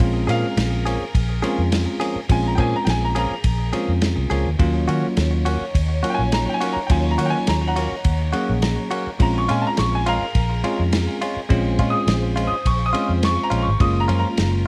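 Soulful and mournful, this excerpt from a longer straight-eighth soul blues in Bb minor moves at 104 BPM in 4/4, drifting through Bbm7, Ebm7 and back before landing on Gbmaj7 near 13.8 seconds. A bright, woody upright piano, slightly detuned and worn with its action noise audible, carries a solo line high in its range throughout. Beneath it a bell-like tine electric piano supplies clean accompaniment and slips in a short fill at 8.3 seconds, while a lush bowed string section holds sustained chords, with vibrato, in the background. A foam-muted fingered electric bass sits up front with a round, punchy tone, beside a dry, lo-fi soul drum kit of muffled kick, snare and dark ride cymbal. A twangy, compressed clean guitar, recorded direct, adds picked stabs through a digital delay, and the whole mix sits in light reverb.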